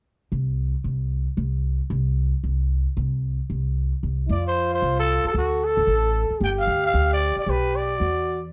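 The sound is close and fairly dry, with a muted top end that tops out near 10.9 kHz. This is a swinging, playful jazz piece in F major, taken at a brisk 226 BPM in 4/4 with a lilting swing on the eighth notes. An upright bass opens alone at 0.3 seconds, its pizzicato gut strings woody, dark and thumpy, sitting up front in the mix. At 4.3 seconds a growling trumpet takes the melody, raspy and gritty with scooped notes and vibrato, bathed in plate reverb that gives it a distant, roomy air. Alongside it, a breathy trombone plays a mellow second line with a soft attack and light vibrato. The chords shift from F through D and G toward G/B and a closing Dadd9/E before the clip breaks off around 8.5 seconds, clearly lifted from a longer performance.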